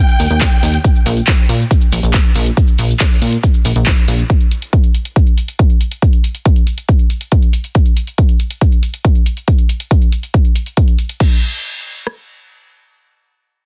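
A straight 4/4 pulse at 139 BPM drives this soaring, euphoric uplifting trance passage in Eb major, where a huge, detuned supersaw lead with sidechain pumping and dub echo sounds only for the first 0.8 seconds over a layered big-room kit with a punchy kick, rim click and soft-clipped snare, while a tape-warm analog drum machine adds crash, handclaps and hi-hat, a plucky, wave-folded analog bass pumps up front until about 4.2 seconds, and grainy, mellow maracas sit close and dry in the background, within a dense, heavily limited, nearly reverb-free master.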